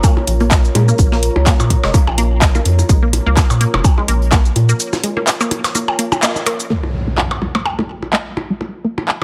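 A punchy, layered electronic kick sits up front in this cool, quirky minimal techno excerpt at 126 BPM in Bb minor, its 16ths swung at 56%, driving the drop until it stops at 4.4 s. Beside it, a booming analog drum machine with metallic hats, handclaps and shaker runs throughout, while a very quiet acoustic kit with a medium-tuned snare and rolled-off top adds hi-hat and snare until 6.7 s. A rubbery, hollow square bass, bouncy and wave-folded, plays from 0.3 to 4.7 s with sidechain pumping, and a juicy, squelchy sawtooth pluck repeats its riff through chorus, phaser, delay and pumping. Tape-warm percussion blips, re-recorded in a large room, run through digital delay, and a deep, moody pad of unison sawtooth with a sub octave, ring modulation and built-in reverb sustains with a slow attack. After a break from 4.8 s and a band accent at 6.2 s, the harmony moves from Bbm to Bbm7 as an electronic impact lands up front, all set in light digital ambience.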